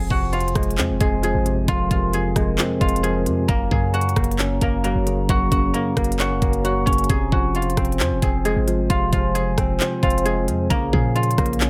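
A digital ambience surrounds this eerie, brooding trap cut, taken from a longer piece and running in a half-time feel at 133 BPM in F phrygian, tuned slightly sharp to A4 = 444 Hz. Up front, an electronic trap kit with a knocking kick, crisp hi-hats, handclaps and rim clicks enters at 0.1 seconds, while a deep, boomy 808-style bass with a sine tone, fast attack and mellow decay anchors the low end. The melody comes from a guzheng played with fingerpicks, its silvery, ringing strings softened by a low-pass filter and trailed by tape echo. Beside it, a bell-like tine electric piano sits direct and close, also filtered, adding accompaniment. In the background, a glass harmonica holds ethereal, airy chords with a slow attack, drifting over a progression that moves from Fm to Gb, back to Fm and onto Bbm7.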